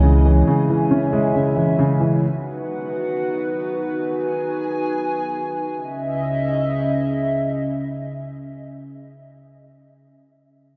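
A dark, mellow concert grand piano and a moody analog pad open this melancholic, hard-hitting hip hop fragment together, both sitting up front in a half-time feel. The piano plays low, smooth accompaniment with a vintage tone and deep bass, then stops at 2.2 seconds as the harmony shifts from a minor added-ninth chord to a major chord. The pad carries on alone, sustaining chords built from detuned sawtooth, square, triangle, sine and wave-folded tones over a sub octave, with a slow attack, long release and lush chorus. At 5.7 seconds a new section begins and the opening minor added-ninth chord returns beneath the pad's held voicing. A huge ambient reverb with a long tail and dark, warm production wrap the whole passage, which is cut from a longer piece.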